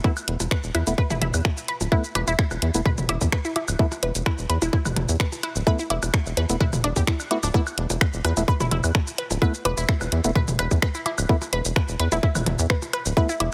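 This minimal techno excerpt runs at 128 BPM in a straight 4/4, its cool, clinical mood held on a single Esus4 chord throughout a drop that lasts the full 13.5 seconds. An overdriven, tight electronic kick sits up front and is the loudest part, joined from 0.2 seconds by an overdriven garage drum kit of finger snaps, hi-hat and shaker, while electronic percussion blips, woodblock and toms with digital delay carry a roomy, re-recorded character. A rubbery, bouncy square bass enters at 0.3 seconds, hollow and nasal in its low register with sidechain pumping. Above it, a juicy, squelchy resonant blip pluck plays a bright riff between D4 and B4, colored by phaser, sidechain pumping and tape echo. A percussive organ stab with chorus and digital delay sits in the background, its mellow, decaying stabs ranging from A3 to E4. The mix is dry and heavily compressed, with a radio-like sound.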